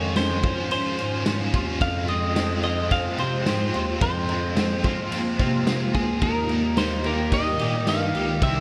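A clean electric guitar carries a compressed, picked melody over a bright overdriven stack guitar with tremolo and chorus, a detuned, airy pad, delayed semi-hollow guitar arpeggios and a mellow, soft-attack bass clarinet holding the low end, before a gritty garage drum kit with punchy kick, snare, ride and tambourine enters at 0.2 seconds in gated reverb, giving this melancholic, haunting dream pop fragment a glossy 1980s-style sheen within a lush hall.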